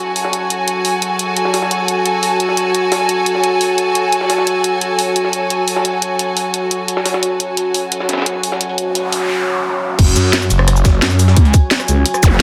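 This excerpt of dark technical drum and bass runs at 174 BPM in a straight 4/4, with an up-front electronic kit of cracking snare, bright hats, crash, rim click and cabasa entering at 0.2 seconds, soft clipping on the snare, layered over a background jungle sampler-style kit whose gritty, pitched-up, high-tuned snare and filtered hats carry a tape-warm, large-room tone. The mood is tense and aggressive, set in F# minor over an F#madd9 chord, where a deep, moody ambient pad of detuned saws and a sub octave holds sustained chords from the very start with a slow attack, chorus and its own reverb, pumping against the sidechain. Alongside it, a smooth, bowed symphonic string ensemble with vibrato supplies rich texture until 9.3 seconds. An electronic noise sweep runs from 8.8 seconds into the drop at 10.0 seconds, where the harmony shifts to F#sus2, a tight, overdriven kick lands up front, and a swirling, thick detuned saw bass with phaser and overdrive pumps against the sidechain, joined by a brief zap near the close. 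The whole sits in a moderate digital room reverb under a dense, heavily limited modern master.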